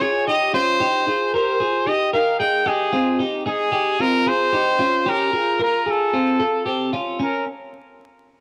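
Indie pop at 113 BPM in a straight 4/4, this short cut from a longer piece feels bittersweet and restless. A bright, vintage-toned trumpet carries the melody up front across a range of Ab4 to G5, played in a pop style with light vibrato, until 7.5 seconds. Beside it, a clean, twangy twelve-string electric guitar picks compressed arpeggios between C4 and Bb4, stopping at 7.4 seconds. The harmony moves from Dbadd9 through Eb, Ab, Bbm7 and F before the chords drop away at 7.2 seconds. Both instruments carry a cassette-tape character, and the home recording sits in a moderate spring reverb with a layer of vinyl crackle.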